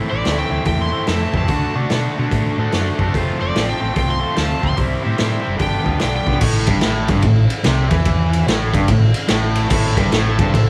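Gritty and brooding, this swung blues rock and southern rock excerpt moves at 146 BPM in A minor. A double-tracked, sludgy overdriven guitar riff and a round, hollow-body short-scale bass sit over a saturated, boomy garage drum kit with crash, ride, hi-hat and a medium-tuned snare, all in a dry mix, with the guitar and drums up front. A dark, fingerpicked slide guitar melody and a very quiet, shouting tonewheel organ with key click and slow rotary speaker carry through to 6.4 seconds, and the organ returns at 9.7 seconds.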